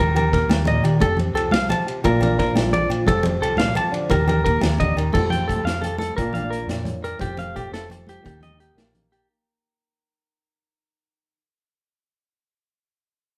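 This sounds like a band playing live together in one large studio, with a moderate reverb around it, in a short cut from a longer highlife guitar-band piece. The mood is sunny and warm, moving at 116 beats per minute in a straight 12/8 in F mixolydian, circling through Eb, Fadd9 and Bb. Up front, a clean, twangy, compressed electric guitar picks arpeggios high in its range, over a small, thumb-plucked nylon-string guitar in accompaniment and a round, dark hollow-body bass played with the fingers. A vintage drum kit with a punchy kick, medium-tuned snare and dark cymbals sits in a pumping small room, while ringing agogo bells and thin-skinned, damped congas stay in the background. The music fades out from 5.1 s, and the nylon-string guitar carries on alone from 9.3 s until 11.3 s.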